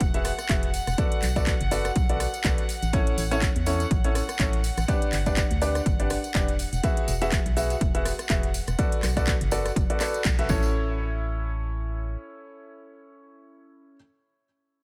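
Euphoric, feel-good piano house in A major at 123 BPM with a light swing, where a bright, up-front baby grand riff with audible action noise and digital delay pumps over a hollow, organ-like FM bass, a rich bowed chamber violin section holding sustained chords, a punchy overdriven kick, a house kit of handclaps, metallic hi-hats and rim clicks re-recorded in a large room, and a tambourine set in the background, all driving the drop until a band accent at 10.3 seconds, after which the piano carries on with the bass until 12.2 seconds and then continues to 14.0 seconds.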